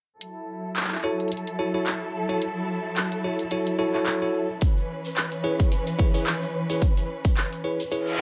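Playful and swaggering, this glitch hop excerpt in a swung 4/4 opens with a lush, bowed string section holding sustained chords that pump against the beat through a low-pass filter, while an up-front electronic drum kit of handclaps and hi-hat drives from 0.2 seconds. At 1.0 seconds a bell-like tine electric piano adds clean, bright stabs roughened by vintage 12-bit sampler grit and trailed by dub echo, moving from F#m7 to C#m7 as a punchy kick and a grainy egg shaker arrive at 4.6 seconds. A reverse cymbal enters at 8.0 seconds, all set in light reverb.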